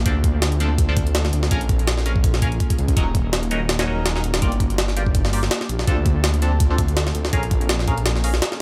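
An airy, ethereal pad and a thick, beating detuned saw bass open this atmospheric, nostalgic drum and bass excerpt with a jungle edge, joined at 0.1 seconds by a nasal band-passed chord stab colored by phaser and dub echo and a gritty, compressed sampler-style drum kit with a thumpy kick and high-tuned snare, as the chords move through Dm7, Bbm7, Ebm7 and Gm7 in a light digital ambience.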